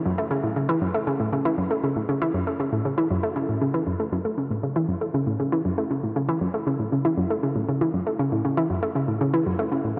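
A round, nasal analog pluck with a wave-folded edge and a fast attack plays alone and up front in a low register from 0.1 s to 10.0 s, its chorus and delay drifting into a lush hall reverb with a 2.8-second tail, giving this mysterious, expansive ambient fragment of a longer piece a dreamy, reverb-soaked depth as it moves into a new section at 4.1 s.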